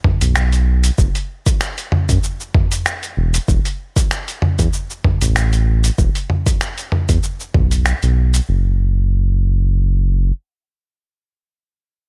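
Organic downtempo with a hypnotic mood and a gentle swing, built on a gritty, tape-warm sampler-style kit of finger snaps, hi-hat, shaker and toms alongside a deep, overdriven electronic kick re-recorded in a small room, both up front until the kick drops out at 7.7 seconds and the kit at 8.5 seconds, while a round, dark, detuned analog bass blending sawtooth, sine and triangle tones pumps with sidechain and sustains alone in digital ambience until 10.3 seconds in this fragment of a longer piece.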